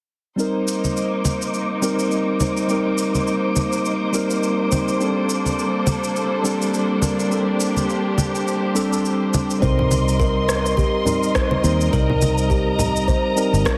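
A mellow tine electric piano with tape echo, lush bowed strings and a tape-warm electronic shaker and rim click open this warm, sunny sunset chillout excerpt at 104 BPM with a swung 4/4 feel, joined moments later by a breathy, wind-like tuned noise texture and close, dry congas played with soft hands over Cm7 and Bbmaj13. At 9.6 seconds the wind texture falls away as a round, dark fingered electric bass and a deep analog kick drum enter, while a woody, ringing kalimba adds echoing arpeggios. The whole excerpt sits in a moderate plate reverb with a heavily compressed, radio-like sound.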